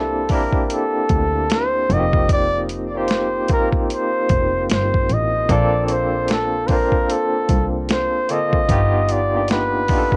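R&B and neo-soul at a relaxed, sensual 75 BPM with a 16th-note swing in Bb major, where a breathy, whispered bucket-muted trumpet carries an intimate melody over a barky tine electric piano with medium tremolo through a combo amp, a dark, veiled bowed double bass with vibrato and portamento, and a gritty, compressed boom bap sampler kit entering at 0.3 s with a thumpy kick, all under light reverb and a worn, warbling cassette-tape pitch drift.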